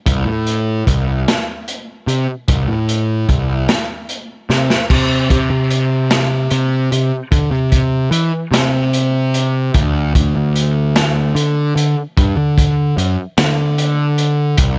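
Trippy and kaleidoscopic, this dry, dark-topped psychedelic rock excerpt moves at 50 BPM in a straight 6/8, with an up-front, overdriven fuzz bass picked from C2 to E3 over a crunchy, gritty breakbeat kit of tight kick, medium-tuned snare, hi-hat and dusky crash that plays a short fill at 4.5 seconds before the music shifts into a new section at 4.9 seconds.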